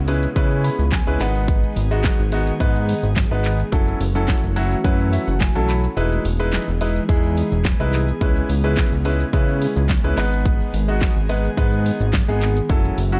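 Euphoric and carefree, this dance-pop excerpt moves at 107 BPM in a straight 4/4, its harmony cycling through C#m7, G#m, F#m7 and Emaj7. A punchy, layered electronic pop drum kit sits up front with a fat snare, handclaps, hi-hat and shaker, and the kick drops out briefly between 6.0 and 7.1 seconds. Beneath it, a thick analog bass built from detuned sawtooth, square and triangle waves with ring modulation and a filter sweep pumps against the sidechain, mellow yet forward in the mix. A clear, polished baby grand piano carries the accompaniment and adds short fills around 0.4 and 4.8 seconds. In the background, a soft, breathy pad with a noise layer and wave-folded edge holds slow-attack chords through chorus and its own sidechain pumping. The production is dark and dry, with little reverb.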